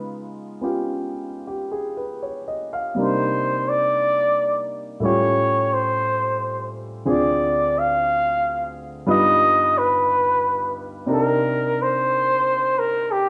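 Jazz ballad excerpt with a melancholic, intimate mood, where a warm concert grand piano with deep bass accompanies alone until a dark, veiled trumpet in a bucket mute enters at 3.0 s with breathy, soft-attacked, scooped notes and light vibrato, both set in a wet, large studio reverb as the harmony drifts through lush minor and altered chords.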